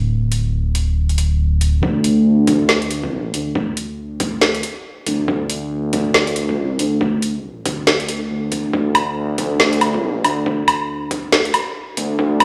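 Deep dubstep with a dark, brooding half-time swing, cut from a longer piece, opens on a rumbling detuned sawtooth bass, joined at 0.3 seconds by an up-front overdriven garage kit of woody snare, metallic hi-hats and woodblock, before a muffled, thumpy pitched-down kick arrives at 1.8 seconds and the track builds through to the end, all wrapped in gritty cassette-tape texture and light studio reverb.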